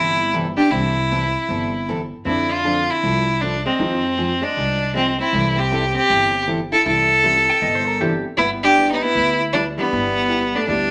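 Western swing country in a playful, cheerful mood, this brief cut features a clear, focused bowed fiddle up front carrying the melody over a dark hollow-body jazz guitar's second line, a full-bodied picked acoustic guitar and a thumpy, woody pizzicato upright bass, while a jangly, detuned honky-tonk piano drifts in at 2.3 seconds and a twangy lap steel slide flickers through at 7.5 seconds, all bathed in a wet studio reverb.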